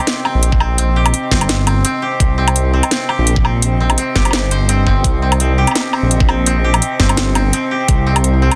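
A rumbling, detuned sawtooth bass sits up front in this heavy, tense half-time drum and bass excerpt, saturated and beating beneath a knocking electronic kick and a tape-warm kit of cracking snare, metallic hi-hats and woodblock. A bright, woody koto picked with fingerpicks plays arpeggios through tape echo, while a moody, warbling ambient pad holds sustained chords in the background with chorus, reverb and sidechain pumping. From 2.2 seconds a very quiet, eerie FM drone adds a metallic, inharmonic texture, all within a dense, heavily limited modern master.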